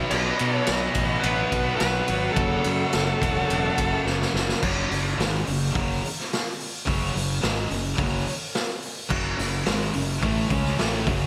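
Hard rock with a driving, aggressive feel, cut from a longer piece: a raw garage drum kit, saturated and gritty with a punchy kick, sits up front in gated reverb, while a growly fuzz fingered bass and a bright, heavy high-gain guitar riff run throughout, joined by a dark, sludgy overdriven guitar at the start and again from 9.1 s. For the opening four seconds a dark high-gain lead guitar carries the melody through digital delay, shadowed by an octave-fuzz lead on a second line, before a drum fill at 4.1 s tips the music into a minor-key section. The mix has a bright 1980s-style digital sheen and a lush hall reverb.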